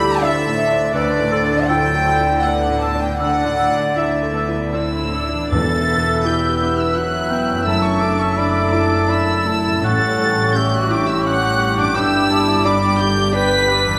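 Longing and bittersweet, this cinematic orchestral film-score excerpt moves in a rubato 3/4 at 74-87 BPM, with a soft-attack, sul tasto symphonic violin section carrying the floating melody over a second violin line, a close-miked clear oboe, a classical-style clarinet and a hollow, airy concert flute, while a vintage-toned grand piano, an intimate viola section, a bright ringing concert harp, a smooth-topped cello section and a rich double bass section fill in beneath, until a dark French horn section and round, very quiet calf-head timpani join at 5.5 s as the music turns to E dorian, all bathed in wet scoring-stage reverb.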